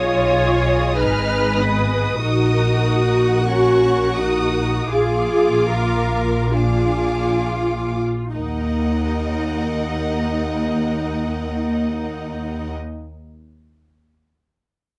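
A slow, melancholic and solemn romantic movement for muted string orchestra in Eb minor, this excerpt from a longer piece drifts with rubato at 31-53 BPM in 4/4, slowing through its first 8.3 seconds before settling on Eb minor. Two muted violin sections carry a veiled, lush melody high above and a second line beneath it, while muted violas supply dark accompaniment and muted cellos and double basses ground the harmony, the basses sitting warm and up front. The close, detailed recording with light reverb catches the soft attacks and vibrato of the con sordino bowing, and all five sections play throughout the 12.7 seconds.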